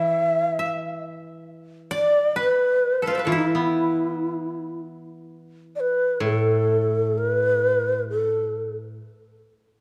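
A breathy, mellow long shakuhachi carries the melody up front, its soft attack and vibrato giving this calm, austere passage of traditional Japanese chamber music its voice, set in E in sen at a rubato pace around 59 to 68 BPM in 2/4. Beneath it, two kotos played with fingerpicks add dry, woody plucked tones: a higher one traces a second line until 5.6 seconds, while a lower, up-front koto holds the accompaniment. The shakuhachi stops at 8.7 seconds and the accompanying koto carries on alone until 9.0 seconds, all within a light reverb.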